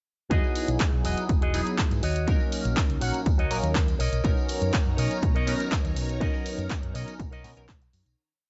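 At 0.3 s a funky, feel-good filtered disco house groove kicks in at 122 BPM in B major: a dry, up-front four-on-the-floor electronic kick, a punchy analog drum machine with programmed hats and clap backbeat, and a tambourine tucked in the background. Over it sit a round, hollow-body fingered electric bass playing a syncopated line, a sawtooth polysynth comp of held rootless chords with syncopated pushes, and a bright, twangy clean guitar riff through an envelope filter, all pumping with sidechain and moving through Emaj9, D#m7 and Bmaj9. A lush, mellow string machine pad with phaser and ensemble chorus joins at 4.2 s as the piece fades out from 5.6 s, set in a low-passed digital ambience.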